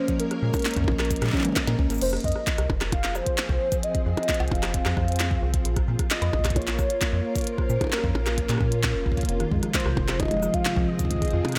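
Opening on a warbling, detuned lead melody over a silky string machine with vintage 12-bit grit and sidechain pumping, a harp-like chorused pluck arpeggio with tape echo, and a faint bubbling filter texture, this melancholic, glitchy IDM passage in F minor at 132 BPM quickly adds a deep electronic kick, an up-front glitchy kit of tiny snare, clicky hats, claps, toms and percussion blips with a drum fill at 1.3 seconds, and a dark, metallic FM bass with tube saturation, while the pluck returns at 9.3 seconds amid light digital ambience.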